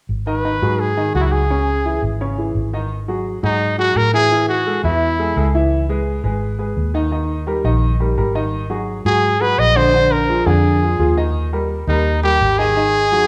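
Danceable and passionate, this salsa clip in 4/4 sets a bright, vibrato-laden pop-style trumpet solo over a worn yet open baby grand piano and a dark, round, foam-muted electric bass, all placed up front in a moderate recital-hall reverb. The trumpet carries the melody from 0.3 s, drops out at 5.5 s and returns at 9.1 s. Meanwhile the piano accompaniment and the amped bass keep moving through chords such as G#m7, Amaj7 and A#7.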